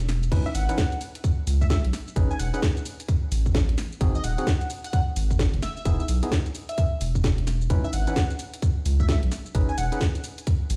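A saturated sub bass and a garage drum kit open this bouncy, soulful two-step garage excerpt, with bright hats, shaker and a cracking snare alongside a crash. At 0.3 seconds a tight, up-front electronic kick arrives, and the bass pumps with sidechain compression while the swung 16ths keep the groove skipping. An overdriven tine electric piano enters at the same moment with barky, gritty stabs through a combo amp and a trail of delay, outlining soulful minor-ninth and major-ninth colours. From 0.5 seconds a catchy, plucky unison lead sits high above, its detuned sawtooth tone carrying lush chorus, vibrato, a filter sweep and vintage 12-bit sampler grit, with delay echoing its phrases. The whole mix sounds as if played on a big sound system in a bare stone room, giving it a light, stony room reverb.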